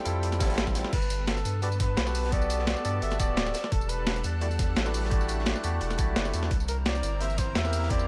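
A barky, lightly overdriven tine electric piano with digital delay and a lush, detuned unison pad with chorus open this uplifting liquid drum and bass excerpt, joined almost at once by a thick, saturated sub bass, a gritty, up-front sampler-style breakbeat kit with crash, hi-hat, snare and tambourine, and a very quiet, dark, crunchy second breakbeat kit. At 0.4 s a faint electronic swell arrives together with a knocking, overdriven electronic kick drum. From 0.9 s a veiled, forceful bucket-muted trumpet carries a jazz-style solo line through tape echo over a small room ambience.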